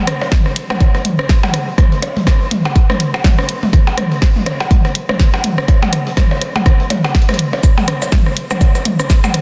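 A dry, dense and heavily limited mix carries this quirky, hypnotic techno fragment at 123 BPM in 4/4 with a 58% sixteenth-note swing, where a punchy, up-front electronic kick runs from 0.3 to 9.2 seconds under a house kit of cabasa, bright hi-hats and a punchy snare, a minimal click kit of percussion blips, rim clicks and toms re-recorded in a large room with soft clipping on its snare and tape echo, and a very quiet, gritty, pitched-up breakbeat sampler kit of hi-hat and snare re-recorded in a small room.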